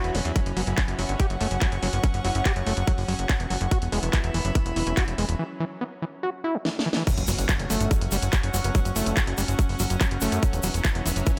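Psychedelic trance at 143 BPM in a straight 4/4, intense and hypnotic, this excerpt runs on a tight, up-front electronic kick that enters at 0.4 seconds beneath a layered techno kit with a cracking snare, handclaps, crash and large-room hats. A punchy, funky analog bass plucks up front in the mix alongside a squelchy, gritty acid riff whose saturated, resonant tone carries vintage sampler grit, delay and sidechain pumping. Behind them, an evolving, wave-folded wavetable pad holds bright sustained chords with chorus and its own reverb, while a close chamber string section adds soft-attack, sul tasto bowing that floats over the groove, both pumping against the kick. A very quiet, juicy blip pluck traces a second line, and the harmony moves between F#5 and E5. After a break and a short drum fill, the drop lands at 7.1 seconds with a faint electronic impact and a grainy egg shaker joining in the background.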